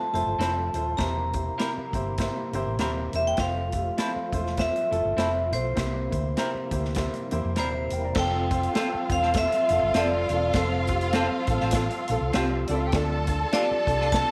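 This swinging 4/4 groove moves at an uptempo 100 BPM in F major, a danceable slice of 1960s-style soul cut from a longer piece. Out front, a ringing, metallic vibraphone struck with hard mallets carries the melody with a slow motor vibrato. A woody, clear upright piano with audible action noise accompanies it, while a round, dark hollow-body electric bass sits up front and a big-room drum kit drives things with a punchy kick, medium-tuned snare, hi-hat and crash. A clean, picked electric guitar adds stabs through spring reverb, and a fat tonewheel organ holds sustained chords in the background, lightly overdriven with key click, chorus vibrato and a slow rotary speaker. At 8.2 seconds the second section opens on F and a lush, distant violin section enters with an expressive, bowed second line, giving the close a warm lift.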